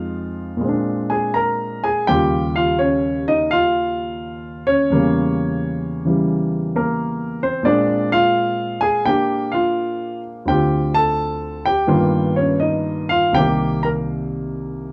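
Relaxed and unhurried, this is a short passage of solo jazz piano lifted from a longer piece. A grand piano plays alone for the full 14.9 seconds at 85 BPM in 4/4, with a swung eighth-note feel that loosens into rubato. Its tone is polished and present, with a short sustain, and it sits up front in a dark production touched by light reverb. The harmony moves from Fm7 through Bb9 and Eb9, passes an Edim7, and settles through Dm7 and G7alt onto Cm7 near the close. The playing spans from C2 up to Bb5, in keeping with the warm, relaxed mood.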